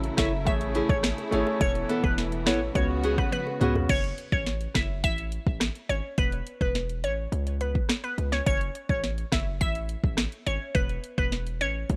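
A dry, gritty recording in a small room opens this hypnotic, sultry dancehall excerpt in F# minor, moving at 105 BPM in a straight 4/4. An up-front afro-pop drum kit with a deep kick, sharp snare and warm hats drives the whole 12 seconds alongside a punchy, heavy 808-style bass with a fast attack and decaying tail. For the first 3.9 seconds an intimate concert grand piano, with audible action noise and long sustain, plays accompaniment over lush bowed strings in the background that pump under sidechain, while a small fingerpicked nylon-string guitar adds arpeggios and very quiet, high-tuned bongos tick close and tight. A glassy, crystalline wavetable pluck carries the melody from 0.2 seconds, bright and up front, coloured by chorus, phaser and tape echo. A drum fill at 3.3 seconds leads into the second section, where the groove narrows to drums, bass and pluck over chords cycling through F#m, A, Esus4 and Bsus2/C#.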